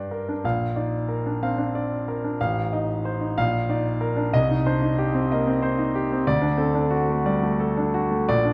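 A clear, up-front concert grand piano with a deep bass and natural tone carries this brief, brooding and passionate fragment of a romantic character piece for solo piano, spanning A1 to G5. The music moves in a flexible, rubato 6/8 at about 62 BPM to the dotted quarter, passing through Bb, F7/A and Cm before arriving on D near 6.2 seconds. A wet recital hall reverb with a 1.6-second decay surrounds the instrument across its 8.5 seconds.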